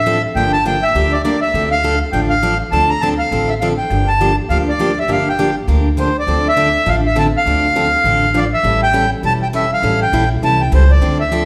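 Acoustic string swing in the jazz manouche style, this brief excerpt from a longer piece feels swinging and bittersweet, with a reedy, dark accordion carrying the melody up front while a bright, picked steel-string acoustic guitar supplies accompaniment, its finger squeaks audible. Underneath, an upright bass with gut strings gives a woody, thumpy pizzicato foundation as the harmony moves from Gm7 through Dm7, Gm9 and Dm9 to A7 near 8.6 seconds. The whole ensemble sits in a wet recital hall reverb, giving it the air of a church or concert hall.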